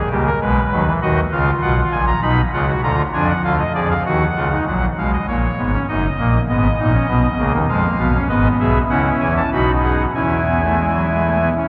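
A dark, cavernous cathedral acoustic surrounds this contemplative, solemn passage of baroque-style classical music, cut from a longer piece. A single pipe organ carries the whole four-voice fugue alone, voiced on a soft, reedy oboe solo stop with a romantic character and a tremulant, sitting up front against the long, wet reverberation. The counterpoint moves in an unhurried triple metre with a straight feel, spanning deep bass notes up into the high treble. The minor harmony shifts to a new phrase at 4.7 seconds, passing through a diminished chord before turning toward E major from 8.3 seconds and arriving on a major chord at 10.1 seconds.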